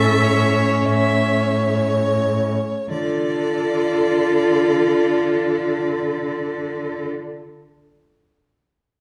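A classical fragment cut from a slow, elegiac and solemn romantic movement for string quartet, played in free time and slowing down through its opening 2.9 seconds as the harmony moves from A to D minor. Two violins carry the bowed melody and a second line with smooth, even vibrato, while the viola's focused accompaniment and the cello's up-front bass sit a little louder beneath them, all four playing together from 0.0 to 7.1 seconds. The quartet is heard from further back in a recital hall, its wet reverb lending the rich tone a solemn glow.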